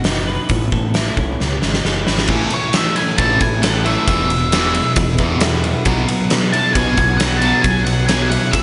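A straight 4/4 pulse drives this brooding, angsty quiet-loud alternative rock excerpt, where a polished, up-front acoustic drum kit with bright cymbals and a punchy kick rolls into a fill under a compressed, clean twelve-string guitar's tremolo arpeggios and a round, growling overdriven bass. At 2.3 seconds a bright, overdriven guitar with slapback echo enters in the background with a riff, at 2.5 seconds a dark octave-fuzz lead guitar carries the melody through digital delay, and at 5.9 seconds a very quiet, thick fuzz guitar adds a further riff. Lush hall reverb gives the whole a big arena sound.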